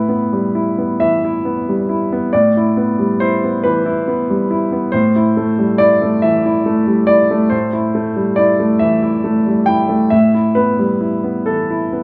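A clear, smooth grand piano opens this wistful, intimate piece of neoclassical minimalist piano, playing alone for the full 12 seconds. Sitting up front with a vintage character, it ranges from A2 up to G5 in A minor. The tempo is slow at 46 beats per minute in dotted quarters, in a 6/8 metre handled with a rubato feel. The harmony moves from Em over an A bass to Am7 at 4.9 seconds, then returns to Em over A at 10.1 seconds. A moderate studio reverb gives the piano an open, roomy sense of space, and the passage is cut from a longer work.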